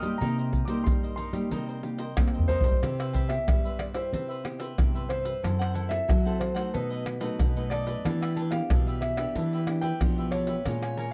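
A dark production with light reverb frames this lively, yearning samba and choro excerpt at 92 BPM in C major, where close, dry, up-front maracas, pandeiro, tamborim and a deep surdo played with hard hands join a warm grand piano melody, a bright, crisp picked cavaquinho, a small, warm fingerpicked nylon-string guitar accompaniment and a full-bodied fingerpicked nylon-string guitar bass line, as a drum fill from 2.2 to 2.8 seconds leads into a new section whose harmony moves from Cmaj7 through F#m7b5 and B7 to Em7.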